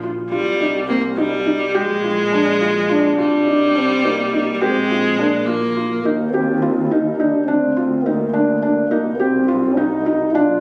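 Hypnotic and pensive, this contemporary chamber piece moves in an uneven 5/8 with a straight feel, and it is heard as a cut from a longer work. A felt-muted upright piano carries soft, mellow arpeggios throughout, while a bowed double bass sits low beneath it with vibrato, portamento and a gentle attack. A clear, focused viola stands up front with a second line until about 6.0 seconds, its vibrato giving the opening a singing edge. The trombone takes the melody from 2.9 seconds, dark and whispered, with scooped notes and a jazz-inflected, intimate delivery. The harmony drifts from C minor through colored Bb chords and an Eb6 before settling back on C minor, and the sound, captured on a phone in the room, carries light reverb and compression.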